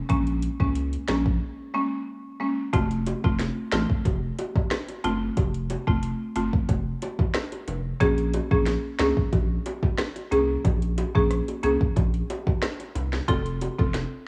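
A woody, buzzing marimba, a thick saturated sub bass and an electronic afro-pop kit with a deep kick, sharp snare and metallic hats open this bouncy, sultry dancehall excerpt in Bb minor at 91 BPM, moving between Bbm7 and F with a brief break from 1.4 seconds before tight, high-tuned vintage bongos join at 2.7 seconds, all in a small room with light reverb and the worn, warbling pitch drift of old cassette tape.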